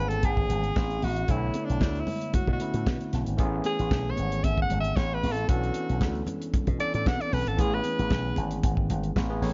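Set in a small, close room with a dulled top end, this glamorous, danceable disco excerpt moves at 114 BPM in a straight 4/4, alternating between Amaj9 and Bm11. A breathy alto saxophone carries the solo melody up front with a clear tone, light vibrato and smooth highs until 8.5 s. Beneath it, a punchy slap bass through an envelope filter and a dry, dark soul drum kit with a tight kick sit forward, while a gritty, barky overdriven tine electric piano accompanies through a combo amp and high-tuned, ringing congas played with soft hands stay in the background.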